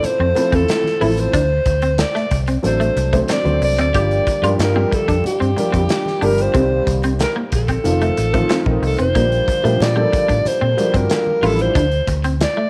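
Breezy and urban, this polished 1980s jazz-funk pop excerpt moves at a straight 92 BPM in F major. A breathy, whispered alto saxophone carries the jazz-style melody up front with vibrato and a soft attack, over a dark, mellow baby grand piano with audible action noise, tube saturation and analog chorus, plus a round, foam-muted fingered electric bass. A modern studio drum kit with a punchy kick and pumping room, very quiet low-tuned congas, and a twangy, slightly broken-up electric guitar riff entering at 0.2 s fill out a home cassette recording with light reverb and small room ambience, moving through chords from Fmaj7 to D7, Gm7, Cm7, F7 and Bb6.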